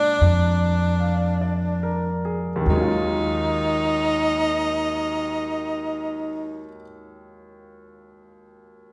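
Swung eighths in a slow 4/4 at 45-54 BPM carry this melancholic, wistful jazz ballad fragment in Eb minor, which slows down over its first 2.7 seconds as a Bb7 gives way to Ebm11, with a bright, up-front tenor saxophone playing a vibrato-laden solo melody over a woody pizzicato upright bass, both stopping at 6.7 seconds, while a clear grand piano accompanies until 8.9 seconds, the whole set in the lush reverberation of a recital hall.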